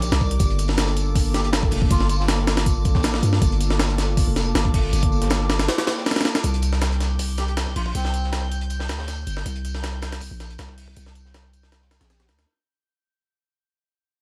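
Vinyl crackle and a small-room ambience frame this atmospheric, raw drum and bass excerpt. A pitched-up, compressed sampler-style breakbeat kit with a thumpy kick and gritty high-tuned snare sits up front beside a deep, mellow sine 808 bass, while a darker, saturated acoustic break with hats, snare and tambourine rolls along in the background. A warbling, nostalgic detuned pad holds chords until 6.4 s, when the fade-out begins, as a drifting glassy texture floats high above and a reedy, nasal melodica with dub echo appears briefly at 1.3 and 7.4 seconds.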